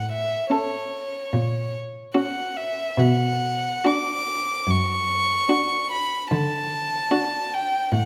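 In a moderate recital-hall reverb, this solemn, elegiac fragment of a slow romantic string quartet movement in B minor unfolds rubato at 73 BPM, with an intimate, airy first violin singing the melody up front over a floating, soft-attacked cello bass, while from 0.5 s a pure second violin line and a dark, nasal, woody viola accompaniment fill in beneath chords moving from A through F#/A# to Bm and D.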